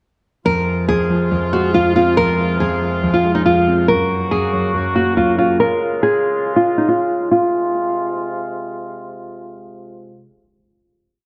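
This short, complete drill hip hop piece moves with a half-time feel and a cold, dark mood. A small, fingerpicked nylon-string guitar sits up front with an acoustic, looping melody that repeats like a sampled loop, softened by a low-pass filter and trailed by tape echo until 8.6 seconds. Beneath it, a deep, boxy concert grand piano plays a mellow pedal-note arpeggio in eighths, also looped and low-pass filtered, before dropping out at 5.6 seconds. A tight woodwind section holds a sustained pad in a classical style with light vibrato, carrying through the breakdown and into the final chord that rings out from 7.3 seconds. A filter sweep runs across the breakdown, and a moderate, lush hall reverb wraps the whole mix over a brief Fm, Gb, Db, Fm progression.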